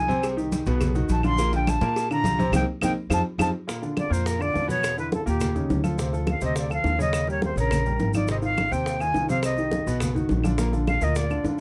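A dry, close 1970s-style studio sound with light reverb frames this sunny, sophisticated Afro-Cuban jazz passage in Bb major, moving briskly at 209 BPM in straight 4/4. An airy silver concert flute with a crisp attack carries the melody up front, soloing through the opening section, where a band accent from 2.5 seconds and a drum fill from 3.1 seconds lead into the next section at 3.7 seconds. A clear baby grand piano with audible action noise accompanies and a growly, thumpy pizzicato upright bass holds the low end, while thick-skinned congas, tight high-tuned cowbell and bongos, and woody claves sit in the background, with grainy, mellow maracas set farther off in a large room.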